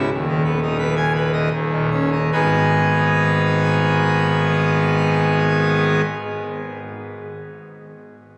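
Dramatic and stormy, this fragment of a classical organ toccata in triple time has a lone pipe organ on full organ, its brilliant, majestic mixtures and romantic voicing set up front and spanning from deep bass notes to a high treble until 6.0 seconds. The opening slows down as it moves through a G#m/D# chord and a D#5 sonority before settling on G#m at 2.3 seconds, where a new passage begins. Captured on a phone in the room, the sound is bathed in a long, wet cathedral reverb with added club reverb and compression.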